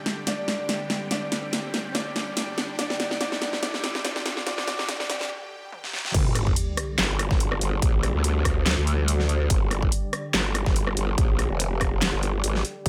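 A half-time heavy wobble dubstep groove at 143 BPM with a slight swing on the 16ths drives this aggressive, chaotic excerpt, as a big-room dance drum kit with a huge, up-front snare, claps, hats, rim clicks, toms and crash fills a build-up over a lush, detuned supersaw pad pumping in the background through phaser and low-pass filter, while a dark, mellow baby grand piano carries a delayed melody until 5.3 s and a very quiet riser and sub drop hover underneath. After a brief break, the drop lands at 6.1 s with an impact, bringing in a punchy electronic kick and a growling, saturated, wobbling bass with chorus and overdrive, bright and up front in the low register. The pad sustains to the end, and the drum parts sit in studio reverb.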